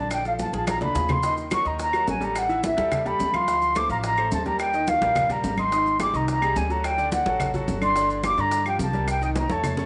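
A straight, brisk 4/4 pulse drives this short excerpt of sophisticated, sunny Afro-Cuban jazz, with a drum fill arriving at 0.4 seconds and again near the close at 9.4 seconds. The airy concert flute carries the melody up front with a straight tone and soft attack, while a bright, brilliant grand piano supplies the accompaniment through lush, shifting harmonies such as Bbmaj7, Ebadd9, Abmaj9 and Gm11. Underneath, a thumpy, woody upright bass with gut strings is played pizzicato. The percussion is led by ringing, close and dry congas, with round, low-tuned bongos and woody claves sitting in the background and grainy maracas adding a soft texture. The mix carries a moderate echo-chamber reverb and small-room ambience, with a gently rolled-off top end that keeps the overall sound mellow.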